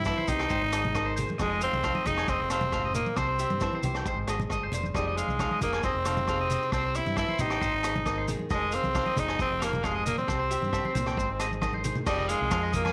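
A raspy, growling tenor saxophone leads up front over a danceable, bittersweet highlife groove, with a twangy, slightly broken-up electric guitar picking arpeggios through slapback echo, a small fingerpicked nylon-string guitar, a round, punchy fingered bass, a vintage drum kit with dark cymbals that plays a fill at 11.5 seconds, and low-tuned congas, ringing agogo bells and grainy maracas tucked in the background, all in a short cut from a longer piece set in moderate spring reverb.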